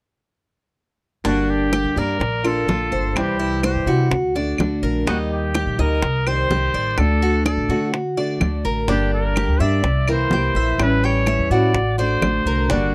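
A breathy, whispered trumpet carries the melody up front over a thumpy, dark upright bass, fingerpicked steel-string guitar, bright metallic tres arpeggios, round low-tuned bongos and woody claves in the background, giving this nostalgic, sultry Cuban son and guajira excerpt in G harmonic minor at 126 BPM a close, dry 1970s studio feel with light reverb.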